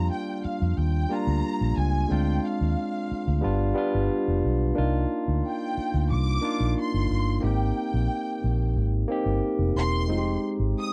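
Lush 1970s-style soul at 90 BPM, romantic in mood, cut from a longer piece and moving through rich chords from Ebmaj9 to Fm9. A dark, woody violin section carries the melody with soft-attacked, vibrato-laden bowing, while a barky tine electric piano through a combo amp and phaser plays the accompaniment up front, and a round, foam-muted fingered electric bass anchors the low end until 10.7 seconds. The sound is dry and close, with little reverb, in the manner of a 1970s studio.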